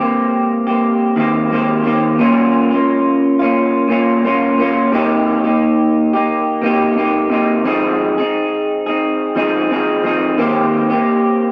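A twangy, slightly broken-up electric guitar through a small old amp plays alone and up front for the full 11.5 seconds of this sunny, dreamy indie pop clip, its lo-fi picked tone colored by analog chorus, warbly pitch drift and analog delay as it moves through Eb6, Bbm, Cm7 and Fm7 in Eb mixolydian at a lightly swung 88 BPM, set in light reverb within a dark production.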